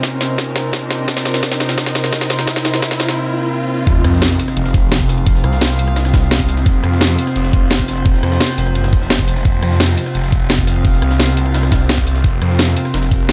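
Dark technical drum and bass cut from a longer piece, aggressive and tense, where a metallic, eerie drone pumping under the beat, a knocking electronic kick, an up-front kit with a cracking snare, a background riser and sub drop, and a faint warbling tape-like pad build for 3.9 seconds before the drop lands at 3.9 s with a swirling, thick, saturated detuned saw bass and a very quiet, gritty, pitched-up breakbeat kit with hi-hat and ride in light reverb.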